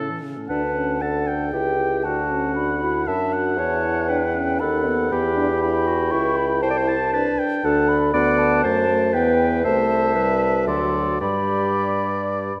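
The oboe, French horn, clarinet and bassoon sound together from the very start of this quick, rubato classical-period movement for wind quintet in 3/4 at 118 BPM, cut from a longer piece. At 0.5 seconds the silver concert flute takes the melody, its mellow, hollow, pure straight tone marked by a crisp attack. The clear oboe carries a second line with light vibrato, while the clarinet's punchy sound and the horn's gentle vibrato fill in the accompaniment. The warm bassoon sits up front in the low register, anchoring the bass. Set in a wet concert hall, the graceful, spirited music moves from D major toward G major at 6.6 seconds and settles on a G chord at 11.2 seconds.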